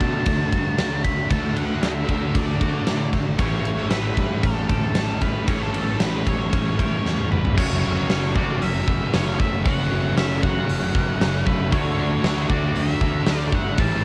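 Hazy and blissful, this shoegaze and dream pop excerpt is led by a dark, distorted octave-fuzz lead guitar carrying the melody over a hall-filled, pumping arena drum kit with bright cymbals, a fat snare and a punchy kick sitting up front. Behind them, a thick fuzz guitar with ensemble chorus and an overdriven guitar bathed in reverse reverb play riffs, a clean, twangy, scooped guitar spins arpeggios through subtle chorus and tape echo, and a round, punchy fingered bass anchors the low end, with the guitars all carrying a cassette-tape grain. A drum fill from 7.0 to 7.6 seconds ushers the progression from D and A7 into F#m7 and Dmaj7, all captured with light reverb on a home cassette recording.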